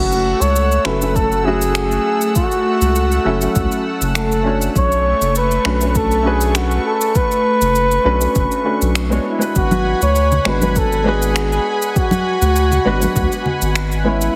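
Sunset chillout with a wistful, smooth mood and a gentle swing, led up front by a veiled, bucket-muted trumpet with light vibrato and digital delay over a worn baby grand piano, also touched with delay. A lush, warbling sawtooth unison pad with chorus holds sustained chords over F#m7, Bm9 and G#m7b5, while a round, nasal analog bass sits deep and up front. Tape-tinged electronic cabasa and finger snaps begin at 0.1 seconds, a layered electronic kick joins at 1.2 seconds, and close, dry congas played with hard hands appear at 9.7 seconds, all within a heavily compressed radio sound with light reverb.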